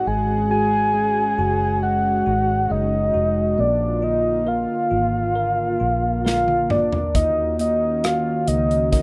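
A straight 4/4 pulse at 68 BPM carries this heartbroken, melancholic pop ballad excerpt, where a round, octave-layered synth lead with chorus and vibrato sings the melody up front over bell-like tine electric piano, a breathy, detuned pad with a slow attack and chorus, and a dark, foam-muted fingered electric bass, until an acoustic drum kit with a punchy kick enters at 6.3 seconds with a fill, the whole rough home demo mix sitting in a small room and moving through Dbsus4, Bb and Ebm7.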